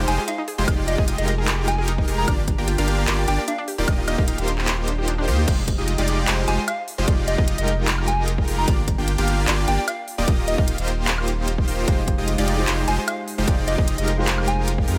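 Dry, with little reverb, this emotional, lush future bass clip at 150 BPM in a half-time 4/4 feel sits in F dorian over chords moving through Fm9, Gm7 and Ebmaj9, with huge, bright, detuned supersaw chords and a thick, saturated sine sub bass pumping up front. A punchy, ring-modulated unison pluck plays arpeggios with delay in the background until 5.4 seconds, while a round, gentle FM lead with chorus and digital delay carries the keys-like melody over a trap kit of crisp hats, handclaps, woodblock and crash. A hard-clipped, tape-warm electronic kick drives the drop but drops out from 5.1 to 5.5 seconds, and a natural grand piano joins the accompaniment at 11.9 seconds.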